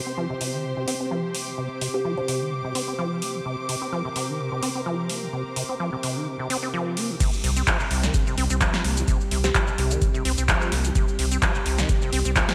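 A swung 128 BPM acid house groove in 4/4 rides on an up-front electro drum machine with a punchy snare, metallic hats, handclaps, rim clicks, shaker and crash, all under gated reverb. A squelchy, resonant sawtooth acid riff with chorus and delay sweeps its filter over pumping vintage string-machine chords and a smooth, vibrato-rich studio string section that stops at 7.2 s. At that point the drop hits, bringing a deep, tape-warm electronic kick and a round, dark ring-modulated bass on C2. A few soft, woody kalimba plucks surface in the background around 1.9 s and again near 9.4 s, and the gritty, trippy mood sits in a bright 1980s-style digital sheen with lush hall reverb.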